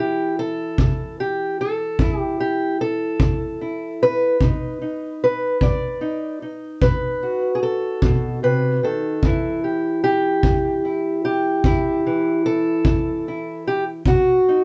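Acoustic country blues with a smoky, soulful mood, this short excerpt cut from a longer piece moves at a slow 50 BPM in a straight 12/8 feel in E minor. A fingerpicked steel-string acoustic guitar carries the melody from the first moment to the end, its dark, boxy parlour tone sitting up front and ranging from E2 to D5. A kick drum joins at 0.8 seconds and plays until 14.2 seconds, punchy yet roomy, with a brushed, small-room character. The harmony passes from C to B7, settles on Em at 9.2 seconds, and closes on B. A short, wet studio reverb places the pair a little further back in the room, lending the intimate duo an unhurried air.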